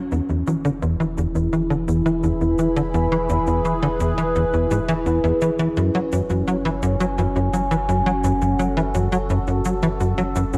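Drenched in a dark plate reverb, this cosmic, expansive fragment of sequencer-driven ambient space music moves at 85 BPM in F# minor, with a punchy, ring-modulated sawtooth sequencer bass riff with delay driving up front beside an evolving, detuned, wave-folded pad holding sustained chords through chorus and phaser, while a round sine sub bass sits underneath and tape-warm electronic shaker and toms fade in across the full 10.6 seconds in the background as the harmony shifts from E to F#m at 5.8 seconds.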